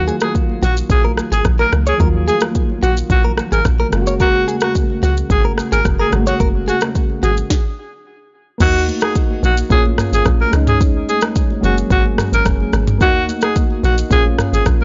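A breathy, edgy alto saxophone with vibrato and tape echo carries the melody of this joyful, breezy afrobeats excerpt at 109 BPM, over soft, mellow electric-piano-like synth keys with chorus and a deep, round, dark log drum bass. A produced afro-pop drum kit with a sharp snare sits up front, bright, high-tuned congas stay distant in the background, and a clean, direct-recorded electric guitar riff plays until 7.3 seconds, just before a stop at 7.5 seconds. The sound is dry and gritty with transformer saturation, and the harmony moves from D#madd9 and F#add9 into a D#m, A#m and C#sus2 passage from 8.6 seconds.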